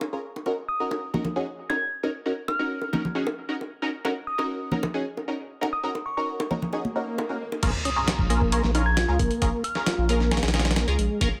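Breakbeat in Bb minor at 134 BPM, this funky, energetic clip from a longer piece opens on a nasal, band-passed sawtooth chord stab treated with phaser, ensemble chorus and dub echo, alongside up-front bongos and congas in a small room, over an Ebm7 harmony. A glassy, crystalline FM bell melody enters at 0.7 seconds, its brilliant tones given chorus, tremolo, a telephone-like filter and dub echo. A background electronic swell builds from 6.9 seconds into an impact as the drop lands at 7.6 seconds, where the percussion stops and the harmony moves to Bbm7. Here a dusty, sampler-style drum kit with a thumpy kick, medium-tuned snare, hi-hat and crash comes in gritty and compressed with studio reverb, joined by a thick, saturated sine sub bass. A lightly overdriven tonewheel organ riff with key click, chorus vibrato, slow rotary speaker and dub echo completes the groove, all set in a light reverb.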